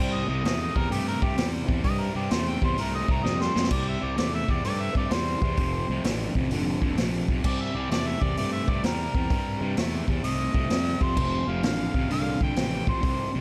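Recorded with light reverb, this raunchy, driving blues rock and southern rock cut swings at 129 BPM in C mixolydian, moving through C, F and C7. A mellow harmonica with light vibrato plays a jazz-style solo over an up-front, double-tracked distorted electric guitar riff and a growly, fuzz-laden fingered bass, while a vintage drum kit with dark cymbals and a punchy kick enters at 0.5 seconds. A drum fill at 3.2 seconds leads into the repeated section at 3.7 seconds.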